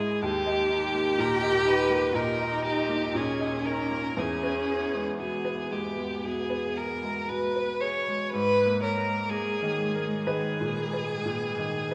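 Violin, cello and a felt-muted upright piano begin together in this melancholic, longing neoclassical excerpt at 57-63 BPM in a rubato 4/4 and G# harmonic minor: the violin carries a smooth, even melody with vibrato and a distant, bowed tone, the cello adds an expressive second line with soft attacks and portamento, and the mellow, intimate piano accompanies with a vintage, thin-felt tone, inside a wet scoring-stage reverb as the harmony moves from D# to E before arriving at G#madd9 at 8.3 seconds.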